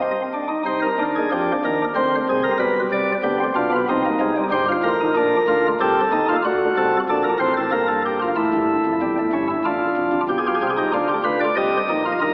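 In a straight 3/4 at 94 BPM, this solemn, driving baroque-style three-part fugue in C minor is played solo on a chamber organ whose sparkling, chiffy flute stops sit up front and span E1 to Eb5, moving through harmonies such as Gm, D7 and A7 before resolving to Cm at 11.6 seconds, all bathed in a church reverb with a thin AM-radio cast across this short cut from a longer piece.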